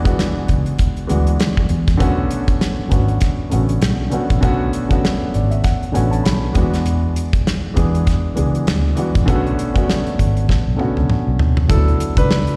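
An up-front grand piano with short sustain opens this cinematic, smooth slice of lush 1970s-style soul at 99 BPM in B dorian, joined almost at once by a dry, polished 70s drum kit with a tight kick and a dark, round, foam-muted electric bass over a swung sixteenth-note feel, with a piano fill at 5.0 seconds and a drum fill at 10.5 seconds, the band heard as a live gig through the venue's PA in recital hall reverb.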